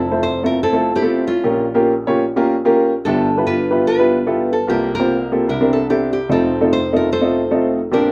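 Gospel in F major at 148 BPM with swung eighths, uplifting and jubilant, in a short excerpt from a longer piece. A fingerpicked nylon-string guitar carries the melody with a full-bodied, deep classical tone, while a warm baby grand piano with natural, short sustain plays accompaniment through Fmaj7, Bbm6, G13, C7sus4, C9 and F7; both sit up front for the full 8.1 seconds. Moderate studio reverb gives a modest sense of room to this rough home demo mix.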